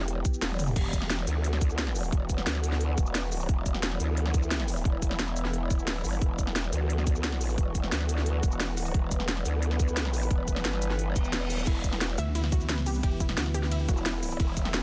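Dark technical drum and bass with a tense, aggressive mood, opening on a drum fill at 0.5 seconds that drops straight into a dense, heavily limited groove where a tight, tape-warm electronic kick and a layered kit of cracking snare, crisp hats, ride, crash, toms and cabasa sit up front. A growling, saturated growl bass shaped by a formant filter wobbles beneath a bright, evolving sawtooth pad with a resonant filter swell, both carrying chorus and sidechain pumping. A reverse cymbal in the background at 11.1 seconds leads into a lush, wave-folded unison pluck arpeggio with delay, while a heavy, detuned pulsing pluck wobble bass adds mellow weight from 12.2 to 13.9 seconds.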